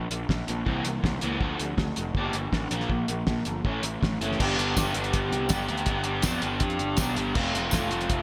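Bittersweet and moody, this brief indie rock excerpt at 161 BPM pairs a crunchy, double-tracked overdriven guitar riff with lush chorus with a punchy fuzz bass and a cloth-damped, thuddy drum kit with a fat snare and gated reverb, while a jingly tambourine sits in the background from 4.8 to 7.8 seconds, all set in a bright 1980s-style hall sound as the chords move from Bb5 through Dm and Gm to G and F.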